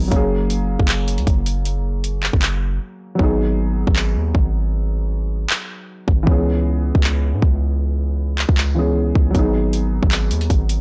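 A blown-out, overdriven recording with little reverb gives this short cut from a longer trap piece a dry, saturated edge and a dark, eerie mood. A muffled, worn grand piano carries the accompaniment, boxy and intimate with audible action noise, its short-sustained chords filtered so only the mellow low end comes through as they move from F#add9 through G#m7 and C#m7. Underneath, a hard-hitting 808-style bass is heavy and punchy, its sine tone carrying a noise layer and a fast attack before it decays. The electronic trap kit sits up front in a half-time feel, with a hard-clipped kick, handclaps and metallic, tape-warm hi-hats. After a brief break at 2.8 seconds, the hi-hats drop out from 3.2 to 9.3 seconds, leaving kick, claps, bass and piano to carry the track.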